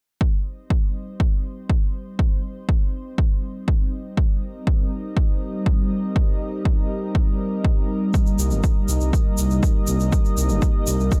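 Melodic techno with a dark, dramatic mood, built on a punchy, tape-warm electronic kick drum sitting up front beneath a lush, warbling unison pad that sustains a single minor chord with chorus and sidechain pumping. At 8.1 seconds a grainy, bright egg shaker joins, and a deep, rumbling detuned saw bass with its own sidechain pumping arrives at 8.4 seconds. The sound is dry and gritty, cut from a longer piece.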